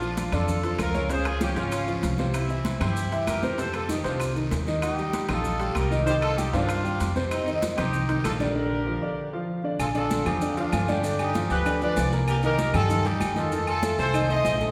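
Festive and danceable, this salsa clip puts a distant, vibrato-tinged horn section on the melody up front beside a clear, intimate grand piano whose action noise is audible, over a dark, thumpy pizzicato upright bass, while bright congas, ringing timbales and agogo bells, woody claves, a raspy guiro and grainy maracas sit in the background, all set in a reverberant recital hall with a short break at 8.6 seconds.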